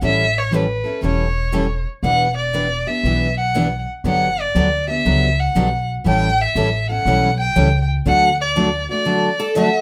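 Playful and lively, this short cut from a longer piece of acoustic string swing moves at 119 BPM with a swung feel, as a rich, bowed violin carries the melody with expressive vibrato and portamento over two bright, picked steel-string acoustic guitars accompanying through A7, Em7, Gmaj7 and A7 on to D, a woody, thumpy pizzicato upright bass anchoring the low end until 8.9 seconds, and a third, boxy parlour guitar slipping in a brief second line at 9.4 seconds, all set in light reverb.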